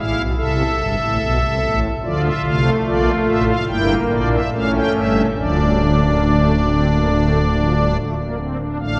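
Classical baroque-style four-part fugue in D minor for solo pipe organ, taken from a longer piece, moving at a stately yet lively 71 BPM in a straight 4/4. The organ's strings celeste stops give a soft, shimmering, romantic voicing that sits up front and spans D1 to G5, with the harmony passing from A minor through D minor, E diminished over G and A7 to an open D fifth at 5.4 seconds. A long, wet cathedral reverb surrounds the playing, lending the sound a distant, resonant air, as though heard from further back in the room.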